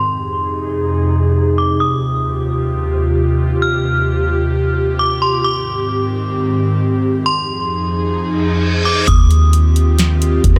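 A breathy, detuned pad with a warbling vintage shimmer floats beneath a ringing, inharmonic FM bell melody set high and soft in the mix, with chorus and tape echo on the bell and sidechain pumping on the pad, while a filter sweep runs through this first section of atmospheric cloud-rap over chords moving from Fm7 through Eb69 and Abmaj7. A reverse cymbal rises at 8.3 seconds into the section change at 9.1 seconds, where a booming analog drum machine with deep kick, tonal snare, rim click and metallic hats arrives up front in a half-time feel alongside a clean, sine-like 808-style bass. The mood is blissful and floating, wrapped in light reverb, and the fragment is cut from a longer piece.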